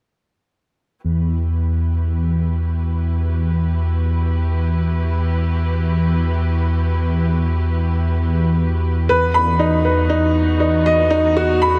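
A muted symphonic string section fades in on sustained, veiled chords over a deep, rumbling detuned saw bass holding E2, setting a cinematic, intimate mood in free time in E minor, moving from Emadd9 to B/E. At 9.1 seconds a clear, woody upright piano enters up front with a delayed riff, sitting above the dark, beating bass in a small, lightly reverberant room. This piano and strings electronica is cut from a longer piece.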